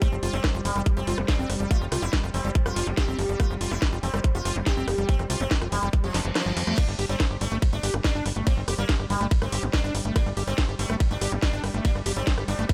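Dry and close, this driving, hypnotic psychedelic trance cut runs at 142 BPM in 4/4, with an up-front electronic kick and a layered drum-and-bass kit of cracking snare, metallic hats, ride, crash and rim clicks pushing over a tight, nasal sequencer bass and a squelchy, resonant acid bass line treated with chorus, digital delay and sidechain pumping. A plucked sitar carries the melody with buzzing sympathetic strings, shimmering through phaser and dub echo, while a very quiet, detuned granular drone swarms beneath on G3 as the harmony moves from F5 to G5. At 6.1 seconds a reverse cymbal rises in the background, and the kick drops out at 6.4 seconds before the groove returns at 6.8 seconds.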